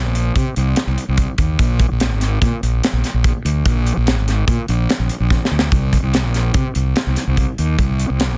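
Counted in an odd five-beat metre with a straight feel, this short stretch of math rock and midwest emo moves with a restless, wistful energy. A fuzz-drenched fingered electric bass carries the low end from the very start, its overdriven, growly tone sitting direct and up front as it ranges from Ab1 to C3. A modern studio drum kit joins almost immediately, an acoustic set heard in a small, airy room, with a high-tuned snare, a punchy kick and hi-hat, all polished and close. Around 5.3 seconds the drums break into a brief fill before settling back in. The sound is dry, with little reverb, and the master is dense and heavily limited, giving this fragment of a longer piece a compact, forceful presence.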